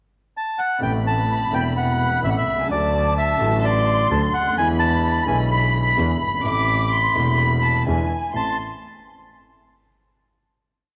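Piano and bowed double bass lay down a tango rhythm of uneven groups of three and two eighths at 128 BPM in 4/4, loosened by a rubato feel in A dorian, for a sultry, dramatic short piece that moves from Amadd9 through D and E7 before settling on a final A minor chord at 8.3 seconds. A reedy, dark bandoneon opens alone at 0.4 seconds with a motif-based melody up front in sentence-like phrases, and at 0.8 seconds a lush, smooth violin section joins with a vibrato-rich counter-melody, the warm concert grand piano adds deep, open accompaniment with long sustain, and a single bowed double bass plays a biting, earthy bass line colored by tube saturation and light vibrato. A moderate echo chamber reverb surrounds the ensemble, with a faint mains hum beneath.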